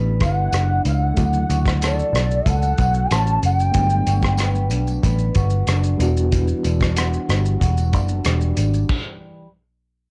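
Indie bedroom pop with a sunny, laid-back feel, this short excerpt sets a twangy, slightly broken-up electric guitar with subtle chorus and a reedy, worn electric piano with fast tremolo over a round, foam-muted picked bass and a cloth-damped, thuddy drum kit with dark cymbals and a tight kick, while a jingly tambourine sits in the background. A pure, bright bass bansuri carries the melody from 0.2 to 4.7 seconds, its soft attack lifted by ensemble chorus and analog delay, as the harmony drifts through suspended and ninth chords. The drums have a gritty, saturated edge, the home cassette recording adds light reverb, and a stop arrives at 8.9 seconds, with the guitar ringing on until 9.5.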